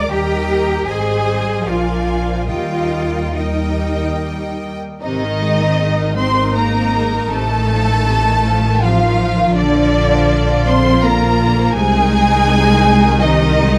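A rubato 3/4 pulse drifting between 69 and 83 BPM carries this lyrical, warm slow movement for string orchestra, taken from a longer piece, which settles around Eb before the harmony turns toward Ab at 5.0 s. A close, up-front violin section sings the melody with expressive vibrato over a bright, intense second violin line, while a distant, smooth viola section fills in the accompaniment and a clear cello section joins a focused, up-front double bass section in the low register. The strings sit in a moderate recital-hall reverb, with vinyl crackle and a faint mains hum beneath.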